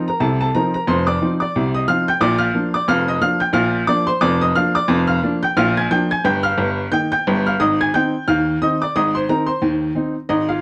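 A clear, woody upright piano plays a cheerful, lively ragtime solo in a swung 2/4, heard up front and intimate with audible action noise and short sustain, set in light reverb and colored by worn, warbling old cassette tape with a dulled top end, in a brief passage cut from a longer piece.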